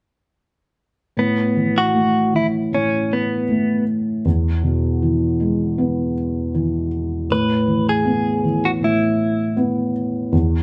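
A felt-muted upright piano and a clean, direct-recorded electric guitar begin together at 1.2 seconds in this tender, hopeful pop fragment, cut from a longer piece. The piano sits up front with a dark, smooth accompaniment in the low register, while the guitar carries the melody with a picked, compressed tone shimmering through harmonic tremolo, stopping at 9.6 seconds as the piano rings on to 10.6 seconds. The pair sound like a band playing live in a stone room with moderate reverb, the chords moving from Asus2 to E and back, with a top end that falls away above 10.8 kHz.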